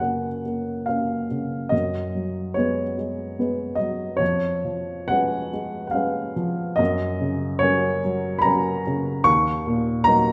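A warm, woody upright piano sits up front in this tender, serene romantic nocturne for solo piano, moving in a flexible, rubato three-beat lilt through a brief passage cut from a longer piece, its sound lingering in the wet reverb of a recital hall.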